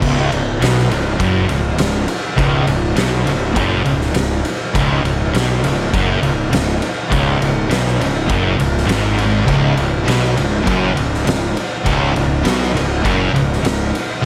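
A straight 4/4 pulse at 101 BPM drives this sludgy, heavy stoner and doom metal passage, cut from a longer piece and built on a single C#5 power chord. Up front, an oversized low-tuned acoustic drum kit pounds out the beat with a punchy kick, a fat snare and dark crash and ride cymbals, set in a bright stone room that pumps around the hits. Beside it sits a growly fingered electric bass, direct and amped with overdrive and fuzz, its low line ranging from C#1 to B1 and stopping at 13.9 seconds. Two picked fuzz guitars play the riff from the opening, one very quiet and warm, the other distorted and set further back, both moving between C#2 and B2. At 9.5 seconds a third, brighter double-tracked fuzz guitar joins in the background to thicken the riff until the cut at 14.3 seconds. Light reverb and small room ambience frame the whole sound.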